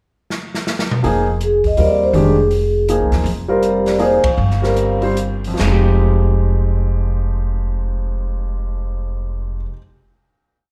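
Searching and spiritual, this brief modal jazz piece in swung 3/4, heard live through a club PA, opens with a drum fill on an airy kit with dark cymbals before woody, thumpy upright bass in a two-feel and deep-toned grand piano with syncopated quartal comping enter at 1.0 seconds, while mellow soft-mallet vibraphone rings out call-phrase motifs with slapback echo, the band slowing down from 3.2 seconds through an accent at 4.2 seconds and settling onto a closing Fm9 chord from 5.6 seconds.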